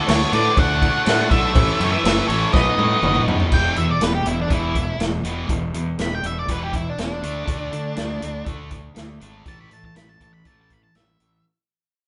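Swaggering, confident classic rock opens on a faint, shouting tonewheel organ with slow rotary chorus and two tight, bright distorted guitars picking a riff in the background, as a dark octave-fuzz lead guitar carries the melody up front over round, overdriven fingered bass and a punchy, rolled-off vintage drum kit. In the opening bars a very quiet compressed fuzz second line, a clear, woody upright piano and a saturated cowbell fill out the sound, until a drum fill at 2.5 s leads into a lead guitar solo from 3.5 s as the music fades out.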